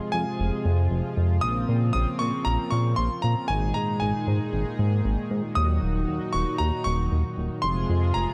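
This synthwave excerpt opens with a clear electric grand piano carrying a high melody between Ab5 and Eb6, its short, vintage tone trailed by tape echo, over a shimmering, chorused pulse-width pad holding sustained chords. At 0.1 seconds a glossy, nasal synth bass joins, its filter pluck and fast attack giving way to a sustained, mellow low end that sits up front and stands out as the strongest part. The mood is nocturnal and driving, moving at 116 BPM in a straight 4/4 in Bb minor. The harmony passes through Fm, Bbmadd9, Absus2 and Ebm before returning to Fm at 7.6 seconds. Digital ambience wraps the dark, warm production, which runs as one continuous passage cut from a longer piece.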